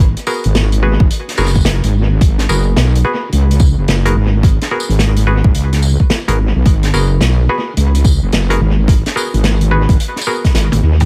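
Glitch hop with a gritty, funky swing, built on an up-front wobbling sawtooth bass with chorus and overdrive, a punchy overdriven electronic kick drum entering at 1.0 seconds, a warm vintage kit with a rolled-off top, made of hi-hat, snare, tambourine and toms through analog delay, and twangy muted clav stabs with sidechain pumping, all steeped in an echo-heavy studio reverb over a single G#m9 chord before a drum fill at 10.5 seconds.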